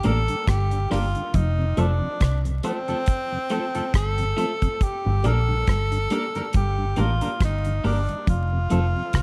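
A breathy, whispered tenor saxophone carries the melody up front with light vibrato and dub echo in this serious, laid-back roots reggae excerpt in G minor, moving at a relaxed 69 BPM with a swung sixteenth feel over a Gm-to-F progression. A damped 70s drum kit with a tight kick, hi-hat and rim click sits dry and close beside a round, foam-muted fingered bass. A bright, twangy clean guitar with dub echo, a mellow tonewheel organ turning through a slow rotary speaker in the background, and a very quiet, slightly broken-up guitar riff fill out a dark production with studio reverb and vinyl crackle.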